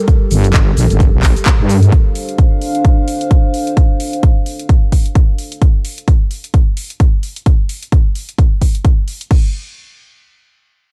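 A deep, moody analog pad of detuned sawtooth and square waves with chorus and sidechain pumping opens this swaggering, aggressive bass house excerpt at 130 BPM with swung 16ths. It is joined by a punchy, tape-warm electronic kick up front and an overdriven house kit of bright hats, handclaps, shaker and crash. A heavy, saturated sawtooth wobble bass sounds briefly from 0.3 seconds over Gmadd9 before the harmony moves to Dm7, and the pad stops at 5.6 seconds while the drums carry on until 9.4 seconds in a dark digital ambience.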